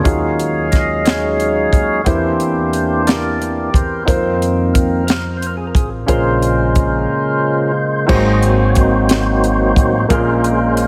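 A fat, clicking tonewheel organ through a fast rotary speaker leads from the opening moment of this solemn, fervent slow gospel excerpt in 6/8, over a natural-sounding concert grand piano, a woody, dark pizzicato upright bass and a dry, up-front funk drum kit with a high-tuned snare and tight kick, the whole mix heavily compressed and radio-like with light reverb.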